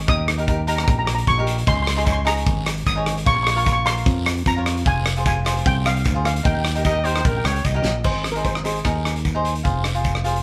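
Calypso at 150 BPM in Ab major, bouncy and festive, with a lightly swung feel: a mellow, shimmering steel pan played with soft rubber sticks carries the melody over a bright, up-front fingered electric bass and a crisp picked cavaquinho accompaniment. A loose acoustic drum kit with a punchy kick, a fat snare and dark cymbals drives the groove, while a raspy guiro enters at 1.7 seconds in the background. A smooth jazz-style trumpet with vibrato and scooped notes adds a brief second line from 6.8 seconds, and a drum fill at 7.9 seconds leads into a new section in this cut from a longer piece, all in a moderately reverberant room.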